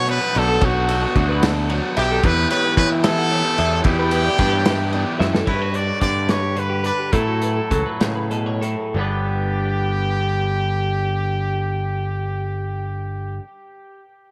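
A lightly reverberant studio sound frames this intricate, playful math rock and midwest emo fragment in 6/8 and G lydian, moving at 62-74 BPM over chords such as Bm9, Em7 and Gmaj7. A brilliant, forceful trumpet with light vibrato and tape echo carries the melody up front. Around it ring a chorus-drenched twelve-string guitar's arpeggios, a growly, punchy picked bass, and a loose small-room drum kit with dark cymbals, while a double-tracked overdriven guitar riff sits in the background. After a drum fill at 5.2 seconds, that riff gives way at 5.5 seconds to a clean, twangy guitar accompaniment as the tempo slows, and the drums drop out at 8.8 seconds.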